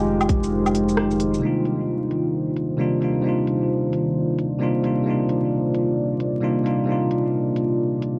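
A bell-like tine electric piano, bright and up front, plays over a dark, detuned ambient pad and a round sine sub bass, all pumping to the sidechain through cassette tape and vinyl crackle in this wistful, melancholic future garage excerpt, with an organic electronic kit of smooth filtered hi-hat, rim click, shaker and woodblock entering at 0.2 seconds with a swung feel. The band hits an accent at 1.0 seconds, and at 1.4 seconds the sub bass drops away as the harmony moves from Fm9 to Cm11. The piano's analog delay and the pad's chorus and 12-bit grit hang in a small, wet room, giving the cut a hazy home-recorded intimacy.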